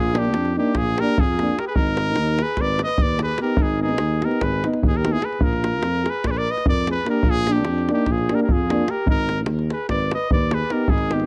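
Balkan brass band folk in a restless, virtuosic mood, this short excerpt from a longer piece drives along at 296 BPM counted in eighths, in a straight 9/8 in Ab Hungarian minor. A bright trumpet carries the melody up front with light vibrato and a classical poise, its line coloured by tape echo, while a breathy flugelhorn plays a second line, dark, soft in attack and intimately whispered with a jazz inflection. Underneath, a mellow tuba holds the bass from a distant, roomy position, and a deep davul sounds close and dry throughout. Two euphoniums join at 0.2 seconds as background accompaniment, one dark with a smooth top and the other warm and punchy, both with light vibrato. The harmony sways between Bb and Abm, and the whole recording has the dry, close feel of a 1970s-style studio with a small room around it.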